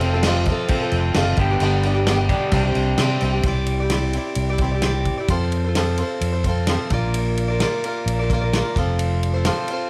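Jangly and hopeful, this folk and heartland rock excerpt has a boxy, picked acoustic archtop guitar with finger squeak sitting up front over a growly, punchy fingered electric bass and a natural country drum kit with a punchy kick and crash and ride cymbals in a small room, while a dark, slightly broken-up electric guitar riff through a small old amp plays only until 3.4 s, where the chords move from Cadd9 on to F and Bb.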